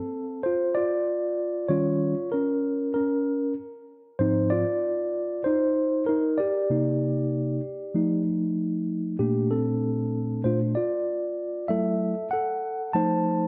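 A mellow tine electric piano plays alone from the first second, spanning Ab2 to A5 in a smoky hip hop vein at 96 BPM with a lazy 16th-note swing. Its tone is clean, direct and up front, drifting through jazzy extended chords such as Eb9, Cm9 and Bbmaj9 before closing on F7 at 12.9 seconds. A moderate plate reverb and worn, warbling cassette-tape pitch drift give this short cut from a longer piece a hazy, aged sheen.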